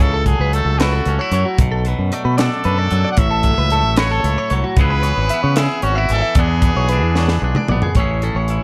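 This short excerpt of math rock and midwest emo moves at 75 BPM in a straight 6/8, its mood wistful yet playful and tuned slightly sharp to A4 = 444 Hz. A brilliant, forceful trumpet carries the melody with light vibrato and a vintage pop-style punch, ringing out until 7.7 seconds. Beneath it, a twangy electric guitar supplies bright picked accompaniment while a clean electric guitar spins scooped arpeggios through analog chorus. The growling fingered bass sits up front, overdriven and punchy, and the crisp fusion kit enters at 0.3 seconds with a high-tuned snare, punchy kick, toms and hi-hat in a gritty, pumping small room, closing with a drum fill from 7.2 to 8.0 seconds. The harmony drifts through F#m7/C#, Bm7, F#m7/A, C#m7 and E7 before landing on Amaj7, all captured in a dry sound with little reverb.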